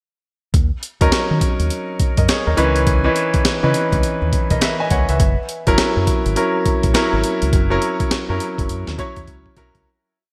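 Upbeat and flirty, this complete new jack swing piece rides a hard-swung drum-machine beat from a breakbeat sampler-style kit. The kit sits up front and sounds gritty and compressed, with a thumpy kick, a high-tuned snare and hi-hat wrapped in gated reverb. A deep, dark fingered electric bass enters with the drums at 0.5 seconds, playing a round, bouncy swung synth-funk line with muted ghost notes. At 1.0 seconds a concert grand piano joins with syncopated chord stabs in drop2 voicings and short fills, its intimate, polished tone carrying audible action noise and long sustain over D#m7, C#m9 and F#7. The bright 1980s-style digital production places the music in a lush hall ambience, and the track fades out from 7.5 seconds, closing on a brief drum fill.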